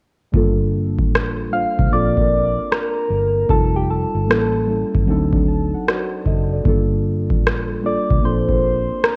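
A worn, warbling cassette-tape haze with gentle pitch drift and light reverb wraps this cosy, nostalgic lo-fi hip hop excerpt, which moves at 76 BPM in 4/4 with a lazy swung sixteenth feel. A booming analog drum machine sits up front, its deep kick and rim click carrying the sense of a large room, while the hi-hats stay muted throughout. Beneath it, a vintage fingered electric bass gives a dark, round, foam-muted tone low in the register. Muted, felt-like synth keys with chorus and a low-pass filter lay down soft, full-bodied jazz chords, moving from Gm9 through F9, A7b9 and D7b9 before returning to Gm9 at 6.7 seconds, and they add a brief fill between 5.1 and 6.7 seconds. From 1.5 seconds a soft struck synth lead enters with a gentle, keys-like FM voice, also filtered and chorused, singing the melody between G4 and F5.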